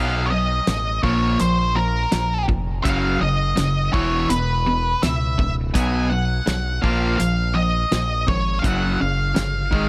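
Swaggering and driving, this short classic rock excerpt moves at 83 BPM in a straight 4/4 feel, cycling through power-chord changes from Cb through Bb5, Gb5 and E5. Up front, an octave-fuzz lead guitar carries the melody with a picked, distorted tone trailed by tape echo, while a growling fingered electric bass, amped and overdriven, holds the low end from the first moment. Two overdriven electric guitars, one of them biting, play picked riffs further back in the mix. The damped 70s drum kit enters at 0.7 seconds, its dry, fat snare, tight kick and hi-hat sounding rolled-off at the top. A small room ambience gives the whole band a close, compact setting.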